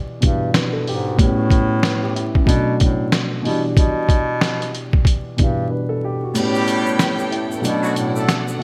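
A bright, 1980s-flavoured digital sheen meets vinyl crackle and a light, small-room ambience in this short, reflective and gritty boom-bap hip-hop cut, which moves at 93 BPM in 4/4 with a swung sixteenth feel in E dorian. Up front, a dark, mellow concert grand piano with deep, boxy lows and a cassette-tape colour carries the chords, moving through Em7, A9 and Bm7. Beneath it, a distant, roomy bass clarinet in classical style holds the low end, while a sampler-style trip hop kit, compressed, pitched down and muffled with a thumpy kick, medium-tuned snare, hi-hat, crash and gated reverb, sits prominently in the mix. After a break at 5.7 seconds, the kick drops out at 6.3 seconds as a lush, woody bowed string section with vibrato and a smooth top enters in the background, joined by loose, pop-style horn stabs doubled in octaves with light vibrato and digital delay. A grainy, bright egg shaker enters faintly at 6.4 seconds to round out the closing bars.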